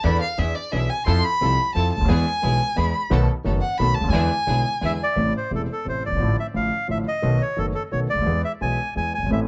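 An expressive bowed violin with vibrato, portamento and a soft attack takes the solo in this melancholic, passionate tango excerpt at 175 BPM in a rubato 3/4, sung close and up front over an intimate, polished concert grand with deep bass, long sustain and audible action noise, focused string-section stabs in the background and a woody, thumpy pizzicato upright bass on gut strings, until the violin stops at 5.0 seconds and a reedy, bright bandoneon, up front with plate reverb and tape echo, takes the melody from 4.9 seconds, in a lightly reverberant room.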